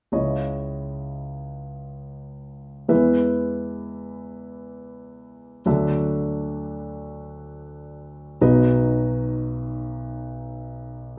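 Reflective and heartbroken, this folk fragment from a longer piece features a grand piano, dark and mellow, sitting up front with its vintage action noise clearly audible. It moves through C#madd9, E, Dadd9 and B over about 11.2 seconds, spanning the low bass to the upper middle of the keyboard. A large studio room adds a lush 0.8-second reverb around the intimate, live-in-the-room sound.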